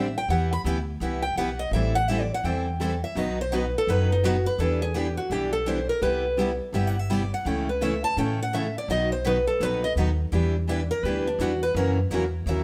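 This bittersweet, swinging stretch of acoustic string swing in the jazz manouche style opens with all four players at once, moving at 168 BPM in E minor. The melody guitar takes a solo throughout, its picked steel strings sounding warm, boxy and up front with a parlour-sized body. Two more picked steel-string guitars accompany it, one bright with fresh strings and an auditorium-sized tone, the other bright, with audible finger squeak and a concert-sized body. Underneath, the upright bass plays pizzicato on gut strings, woody, dark and thumpy, sitting prominently in the mix. The harmony moves from Em through Am7 and B, then on through Cmaj7 and A/C# before closing on F#7 at 11.8 seconds. The band sounds like it is playing live in one room, wrapped in a moderate studio reverb, and this excerpt is cut from a longer piece.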